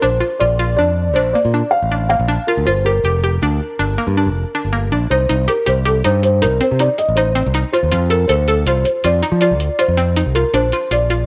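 A felt-muted upright piano carries the melody from the start, its boxy, mellow tone with audible action noise, set over a hollow, detuned square-wave pluck playing chorus-treated arpeggios and a bright, up-front fingered electric bass. This is tense, intricate progressive instrumental music in 7/4 at 160 BPM with a straight feel in C dorian, moving through Bbmaj7, Gm, Cm, F and Bb under light reverb. At 5.3 seconds a muffled, pitched-down electronic hi-hat enters, before the fragment ends at 11.3 seconds, cut from a longer piece.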